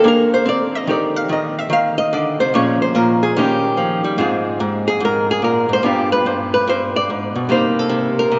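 Swinging and relaxed, this brief solo jazz passage is cut from a longer piece and centres on a single archtop guitar, miked and amplified, playing alone from 0.0 to 8.4 seconds. The hollow-body electric tone is dark and clean, picked and compressed, and sits up front in the mix, ranging from G2 up to F5. A long cathedral reverb surrounds the playing, lending the sound the spacious, lingering ring of a church or concert hall, with the top end rolled off. The eighth notes carry a light swing in 4/4, and the harmony moves from Bb7 into Ebmaj7, then through Bbm7 and Eb7 to Ab6, G7 and Cm7. It is a short, unhurried glimpse of jazz guitar heard in a resonant space.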